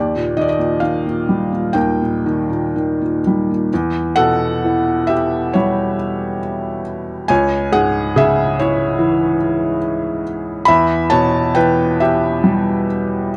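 A felt-muted upright piano plays alone from the first moment, its mellow, intimate tone sitting up front with audible action noise in a reflective, wistful piece of lyrical solo classical music. Moving in a rubato 4/4 at roughly 59-73 BPM and spanning C#2 to B5, it opens on a D# chord before shifting at 3.7 s into a new passage that moves through Em, C#m and back to Em. Light reverb and a dark, warm production surround this 13.4-second fragment of a longer piece.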